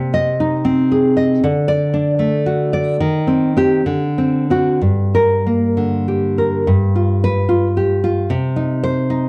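A lone nylon-string guitar, fingerpicked and up front, opens on an Ab/C chord and moves through D and Cm/Eb to a D7 that settles on G minor at 4.8 s in this melancholic, passionate romantic piece, played rubato in 2/4 at around 61-79 BPM. At 6.7 s the music turns to a new passage, from G7 to C minor, before the clip cuts off mid-piece. The guitar's full-bodied, deep classical tone sits in a moderate recital hall reverb with a dark production.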